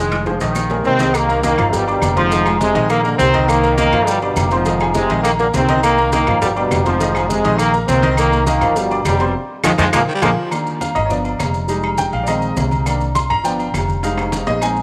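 A driving salsa groove at 205 BPM in 4/4 pushes this fiery C minor passage, cut from a longer piece, with congas, claves, maracas, and timbales and agogo bells running throughout, while bongos and cowbell play until about 10.3 seconds. The congas are low-tuned with a thick skin, the claves woody, the maracas grainy and distant, and the timbales ring with a metal-shell, vintage tone in the background, while the compressed, saturated bongos sit very quiet. A clear, worn grand piano and a dark, woody pizzicato upright bass carry the harmony from start to finish over a repeating chord cycle. A distant trombone section opens briefly before the punchy, up-front trombone section takes the melody with light vibrato and a smooth top, leading into a band accent and drum fill near 10 seconds, where a raspy, gritty baritone saxophone with tape echo adds a short second line. The grand piano then steps forward for a solo from 10.5 seconds to the end, all set in a moderate plate reverb.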